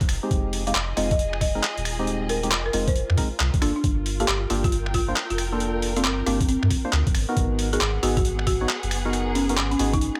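A two-step UK garage groove at 136 BPM swings its sixteenths, with a gritty, overdriven sampler-style kit of finger snaps, handclaps and hi-hat sitting up front over a pitched-down, thumpy electronic kick, while a soft, round dub sub bass with tube saturation anchors the low end. Hollow, percussive organ stabs with subtle chorus and digital delay float over muted, veiled strings that pump under sidechain compression, and from 0.7 seconds a woody, rustic marimba carries the melody through its own echoing delay. The moody, soulful harmony moves from Fm7 to Gm7 to Abm7 in light digital ambience, a short cut from a longer piece.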